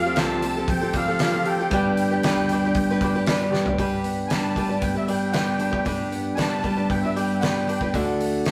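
A straight 4/4 groove at 116 BPM carries this nostalgic folk-rock and heartland-rock excerpt in G major, where a twangy, compressed twelve-string electric guitar riff with spring reverb rides over a woody picked archtop guitar, a growly pizzicato upright bass, a background baby grand piano and a barely audible tonewheel organ that both stop near 3.8 seconds, a loose drum kit with a fat snare that enters at 0.2 seconds and fills at 3.5 seconds, and a reedy, shimmering musette accordion with tape echo taking a solo from 3.8 seconds, all in a rough rehearsal-room recording with a moderate stone room reverb.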